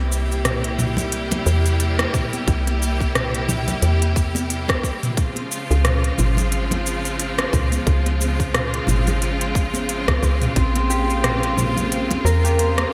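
A swung sixteenth-note groove of crisp, overdriven electronic hi-hat, rim click, cabasa and toms with gated reverb, joined by bright, hard-handed congas in the background and a tight overdriven kick from 2.1 to 10.7 seconds, drives this earthy, mystical organic downtempo excerpt. A woody, round FM bass anchors the low end while a clear, focused bowed string section with vibrato holds chords moving from C7 to Dbmaj7 to Bbm9, both pumping with the sidechain. A ringing fingerpicked concert harp enters at 10.6 seconds with arpeggios in delay and shimmer reverb, all within a lush hall and a bright 1980s-style digital production.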